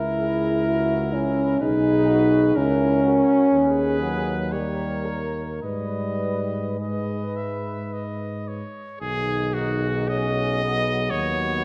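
Bathed in the wet reverb of a scoring stage, this melancholic, elegiac fragment of a hymn-like classical brass band piece moves in a rubato 3/4. A clear, present cornet sings the melody over a soft-attacked French horn section's second line, while a background trombone section and a distant, roomy euphonium fill out the accompaniment and a smooth-topped tuba anchors the bass, each part played with light vibrato, before the music turns to a new section at 9.0 s.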